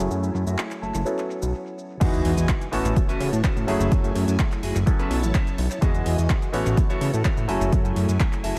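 A fat, saturated analog bass sits up front in this funky, groovy filtered disco house excerpt at 126 BPM in F# dorian, its thick, detuned sawtooth tone pumping under a low-pass filter. A mellow, stringy clav carries the accompaniment with phaser and tape echo, while a bright, twangy clean electric guitar picks a riff through its own echo, and a swirling phased string machine holds sustained chords in the background with ensemble chorus and vintage 12-bit sampler grit. A punchy, overdriven analog drum machine supplies crash cymbal, handclaps, hi-hat and shaker from the start. After a filter sweep and a brief break from 1.5 s, the drop arrives at 2.0 s, when an overdriven electronic kick enters up front alongside a very quiet sub drop impact. The chords cycle through F#m9, B9sus4, Emaj9 and A6 in an echo-heavy mix with little reverb, and the excerpt is cut from a longer piece.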